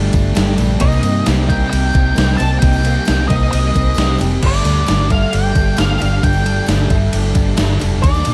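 A gated 80s digital drum machine sits up front from 0.1 s, its thumpy kick and gated-reverb snare overdriven and re-recorded in a small room, with crash and ride cymbals. This brooding, melancholic fragment of a longer shoegaze and dream pop rock piece moves at 133 BPM in a straight 4/4 in G minor, passing from Gsus2 to Cm7 at 0.8 s and back to Gsus2 at 4.4 s. A thick fuzz guitar carries a distorted riff through ensemble chorus, while a slightly broken-up electric guitar plays another riff in the background, bathed in reverse reverb. A bright, shimmering, octave-doubled parlour twelve-string acoustic picks arpeggios through analog chorus and digital delay, and a very quiet, jingly tambourine ticks close by. Underneath, a round, punchy, foam-muted vintage bass is amped and up front, and from 0.8 s a dark octave-fuzz lead guitar sings a high melody through digital delay, all set in a dark, warm production with digital ambience.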